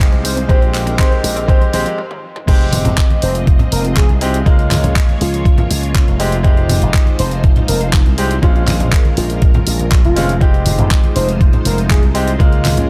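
A straight 4/4 groove at 121 BPM drives this sensual, groovy nu-disco cut in F minor, anchored by a gritty, thumpy electronic kick that sits up front while a layered, produced pop kit adds hi-hat, handclaps, toms and crash. In the opening build-up a detuned, warbling unison pluck runs sawtooth arpeggios in the background until 1.9 seconds, and a drum fill and stop lead into the drop at 2.5 seconds; shortly after, at 2.7 seconds, low-tuned, ringing congas played with soft hands join the groove. A growly, punchy slap bass with an envelope filter holds the low end, and a brilliant baby grand piano with audible action noise plays accompaniment through sidechain pumping and tape echo. A lush string machine with a slow attack sustains vintage, phased chords with sampler grit, moving through Fm7, Db6 and Bbm7. Over the top, a mellow, round octave-layered synth lead carries the melody with vibrato, chorus and analog delay, and the whole mix stays close and dry with little reverb.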